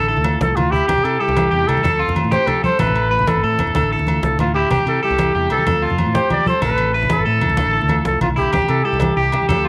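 The rhythm rolls in 12/8 at 126 BPM in dotted quarters with a straight feel, driving a danceable, carefree highlife guitar band groove in C major, cut from a longer piece and lasting 9.7 seconds. Up front, a growling trumpet carries the solo melody in a jazz style, its raspy, gritty tone marked by vibrato and scooped notes while still sounding mellow and somewhat distant in the room. Beside it, a twangy, slightly broken-up electric guitar picks warm arpeggios through spring reverb, and a dark, clean semi-hollow guitar plays fingered accompaniment in the background. A round, direct fingered electric bass anchors the low end, while the cajon enters at 0.1 seconds with snappy soft-hand strokes, joined at 0.2 seconds by ringing agogo bells and close, low-tuned congas. The chords cycle through Dmadd9, C, F and Amadd9 in a moderate studio reverb, and the cassette-tape home recording lends the trumpet and guitars a tape grain.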